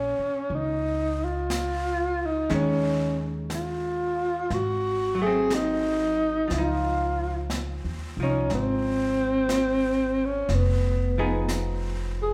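A moderate recital-hall reverb, with a decay of about 1.6 s, surrounds this intimate, wistful jazz ballad, cut from a longer piece and tuned to A4 = 444 Hz. At a slow 60 BPM in 4/4 with a swing feel on the eighth notes, a breathy tenor saxophone carries the melody up front in Bb minor, its whispered subtone, soft attacks, scooped notes and vibrato giving it a dark, confiding voice. A miked and amplified hollow-body archtop guitar accompanies with clean, picked, shadowy chords, while a woody pizzicato upright bass sits forward in the mix. A jazz kit played with brushes joins at 0.5 s, its brushed snare and hi-hat set quietly behind the others. The harmony moves from Bbm9 through Eb9sus4, Ab7b9 and a lingering Dbmaj9 before arriving on Fm7b5 at 10.5 s.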